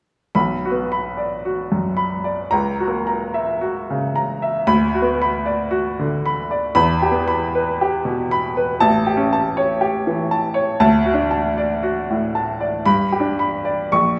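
This is a romantic character piece in the classical tradition for solo piano, brooding and bittersweet in mood, unfolding in a slow 2/4 with a rubato feel. A clear upright piano carries the whole passage, from 0.3 to 14.2 seconds, spanning A1 to C#6 and sitting up front in the mix. Its tone is woody and vintage, smooth yet with short sustain, so each sound fades quickly. The harmony moves from Bm through F#7/C# and Bm/D to Em, then A7, D and G. A wet recital hall reverb of 1.4 seconds surrounds the instrument with the resonance of a church or concert hall, and the passage is cut from a longer piece.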